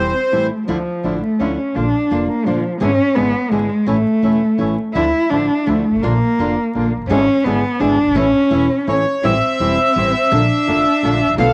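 Vinyl crackle and a small-room home cassette sound frame this melancholic, sultry tango fragment in 3/4 with a rubato feel, where a dark, bowed cello takes an expressive, up-front solo with vibrato and portamento from 0.7 to 9.2 seconds before a reedy, boxy bandoneon melody returns at 8.9 seconds, all over full-bodied fingerpicked nylon-string guitar with finger squeak, smooth bandoneon stabs in the background and a woody, growly pizzicato upright bass.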